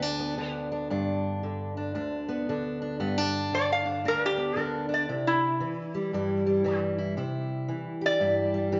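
A metal-body resonator slide guitar leads up front with a bright, nasal, metallic voice, played with fingerpicks and a slide in its upper register, while a fingerpicked steel-string acoustic guitar sits close beside it with a warm concert tone and bass-to-mid accompaniment. This rollicking, gritty acoustic country blues piece swings its eighth notes at 115 BPM in 4/4 and G major, moving from G to C at 5.1 seconds. Cut from a longer performance, the duo sounds like it is playing live together in one large studio room, with a lush reverb and a dark, rolled-off top end.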